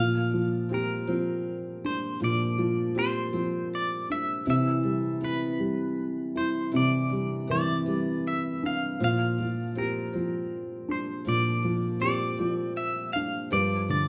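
A rough home-demo mix wrapped in a short, wet studio reverb gives this brief folk-pop ballad fragment in 6/8 a hopeful, intimate feel. Up front, a felt-muted upright piano carries the accompaniment with a soft, mellow tone and short sustain, its thick felt dulling each note. Alongside it, a picked steel-string acoustic guitar plays arpeggios with a warm concert tone, and finger squeaks are audible on the strings. The melody comes from a bright, clean electric guitar, picked with a scooped tone and treated with tremolo and plate reverb, sitting forward in the mix. All three parts play together from 0.0 to 14.1 s over a gentle progression that moves from Bb69 to Cmaj9, back to Bb69, and lands on G7(no3) just before the cut.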